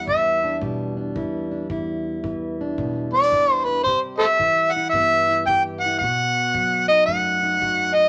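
An overdriven harmonica and a fingerpicked, plugged-in steel-string acoustic guitar open this smoky, soulful slice of acoustic country blues, with a kick drum joining at 0.1 seconds. The harmonica carries the melody up front, its amplified tone gritty and warm, shaped by vibrato, scooped notes, tongue slaps and a soft attack in a jazz-inflected solo voice. Beneath it, the parlour guitar sounds dark and boxy, its fresh strings fingerpicked through an accompaniment that moves from Em7 to Cmaj7 to B7. The kick sits in the background, tight and smooth with a rolled-off top, played with brushes in a small room. A swing on the eighth notes and light reverb round out this short passage, cut from a longer piece.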